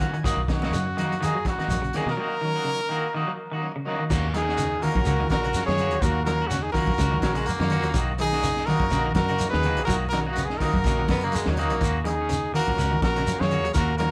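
A swung sixteenth-note afrobeat groove rides on a crunchy breakbeat kit with a high-tuned snare and dark cymbals, joined by ringing congas, a grainy shekere in the background and a round fingered electric bass entering at 0.2 seconds, setting a defiant, hypnotic mood in this cut from a longer piece. A buzzy overdriven combo organ opens with a fill and sits behind two twangy electric guitars at the edge of break-up, one picking arpeggios and the other playing stabs, both in spring reverb. Up front, a clear, close-miked trumpet carries the melody with vibrato; a warm trumpet with scooped notes adds a second line from 4.3 seconds, and a raspy baritone saxophone brings two brief, edgy phrases from 7.2 seconds, over Bmaj7 and Ebm7 chords in a live-room sound.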